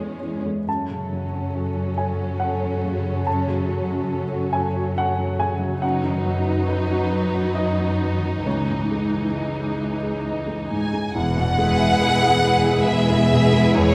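A sorrowful, moving cinematic film score in a slow, rubato 3/4 at 69 BPM opens with a woody, vibrato-laden violin section carrying the melody over a lush second violin line. Beneath them sit a smooth viola section in the background, an intimate baby grand piano with audible action noise, ringing thumb-plucked harp arpeggios and an expressive cello section bass with portamento. At 11.1 seconds, as the harmony arrives on E, a very quiet, mellow French horn section adds sustained chords and an even double bass section joins the bass in the background, all heard through the moderate reverb of a scoring stage in this passage cut from a longer piece.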